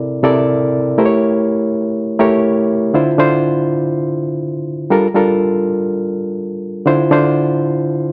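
This disco fragment in D minor moves in free time, its mood driving and sultry, and it is cut from a longer piece. A single electric piano carries it alone from start to finish, reedy and barky with a bright, lightly overdriven edge, heard as if through its own built-in speakers and placed up front. It ranges from C3 to D5, covering both the low register and the upper middle. The opening passage runs to 2.9 seconds, moving from C13 to A7b9. A second passage then settles into a minor-key cycle of Dm7, Gm7 and back to Dm7. A moderate reverb from a large studio surrounds the piano, giving it a sense of space.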